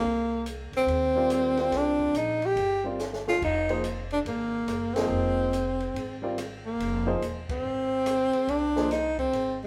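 Intense and hypnotic, this short modal jazz excerpt swings at 142 BPM in 4/4, with the band playing live together in one large studio room that lends a moderate reverb. A clear, close-miked tenor saxophone carries the melody up front, its soft attack and vibrato giving the solo line a smooth presence. Beneath it, an upright piano with a woody tone and long sustain supplies accompaniment, while a pizzicato upright bass on steel strings adds a growly, thumpy low end. An open jazz drum kit joins at 0.5 seconds, pairing dark cymbals with a high-tuned snare and a boomy kick, and plays a fill from 3.0 to 3.4 seconds. The harmony moves from Cm9 to Fm7, and the full band hits accents at 4.9 and 7.4 seconds before the piece is cut off.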